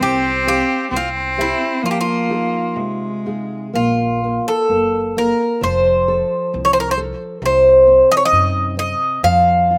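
A dry, intimate outdoor recording of a mournful, longing fado-style ballad in F minor, cut from a longer piece and moving at a rubato 66 BPM in 2/4. The picked, metallic Greek bouzouki carries the melody up front with its double strings. Beneath it sit a fingerpicked, full-bodied nylon-string guitar with slapback echo and a woody, growly pizzicato upright bass, while a rich, bowed cello with vibrato and slapback echo sings an intense second line until 3.7 s. A break arrives at 1.8 s on Fm7, and the harmony then drifts through Gbmaj7, F and Cdim before the chords fall away.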